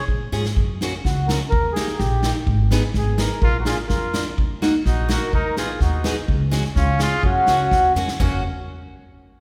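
A straight 2/4 pulse at 126 BPM drives this jolly, bouncy alpine folk dance-band clip in F# major, cut from a longer piece, with a street-band drum kit whose boomy kick, medium-tuned snare, toms and dark crash cymbals sit up front and add fills at 0.3 and 8.0 seconds. A reedy, mellow accordion carries the melody over woody pizzicato upright bass and bright, freshly strung picked steel-string acoustic guitar with audible finger squeak. A warm, classical-style trumpet plays a second line, sounding briefly at the start and returning at 3.4 seconds, all set in the moderate reverb of a church or concert hall.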